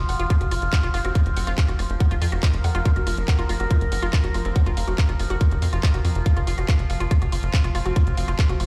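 A driving 4/4 pulse at 141 BPM with a straight feel anchors this alien, hypnotic psychedelic trance excerpt, cut from a longer piece and resting on a single Fsus4 chord throughout its 8.7 seconds. A tight, up-front electronic kick sits at the front of the mix, joined by a garage drum kit of handclaps and warm hi-hats, both re-recorded in a small room, while a punchy sawtooth-and-square sequencer bass with a fast-attack filter pluck and a moving notch drives underneath from F1 to F2. Above it, a woody, wave-folded pluck riff with ring modulation and a noise layer plays between F4 and Gb5, treated with chorus, delay and sidechain pumping. A nasal, resonant drone with moving overtones holds sustained chords from F3 to Bb4, its slow attack and long release softened by chorus, built-in reverb and sidechain pumping. A very quiet, metallic FM wobble bass on C4 surfaces only briefly, at 1.0, 4.5 and 7.9 seconds, saturated and compressed. 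The whole mix sounds as if played on a big sound system in a bare stone room, giving it a cavernous digital ambience.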